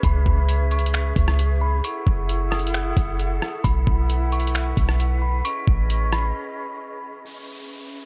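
A deep, boomy 808-style bass sits up front in this spacious, melancholic excerpt of atmospheric cloud-rap, moving under a half-time groove from a compressed, muffled, pitched-down sampler kit of finger snaps, hi-hat, rim click and a thumpy kick. Above them, an eerie, inharmonic FM bell carries the melody through chorus, phaser, low-pass filter and analog delay, while an airy flute section holds expressive, vibrato-laden chords that pump against the sidechain beneath the chords C#m7, F#m9, B7sus4 and Amaj9#11. The bass and drums fall away just before a break at 6.4 seconds, and an electronic downlifter enters at 7.3 seconds as the progression returns to C#m7, all in a light digital reverb.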